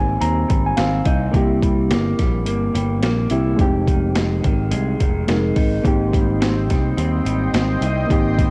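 A hazy, sunny indie and bedroom pop excerpt with a lazy swung groove, where a reedy, slightly out-of-tune electric piano opens with a fill over a chorused, warbly guitar through a small old amp, a round, dark picked bass and a gritty, pitched-down boom bap kit with a thumpy kick and high-tuned snare, all of it dry and tape-worn like a home cassette recording, until a lush, airy detuned pad drifts in at 5.9 seconds.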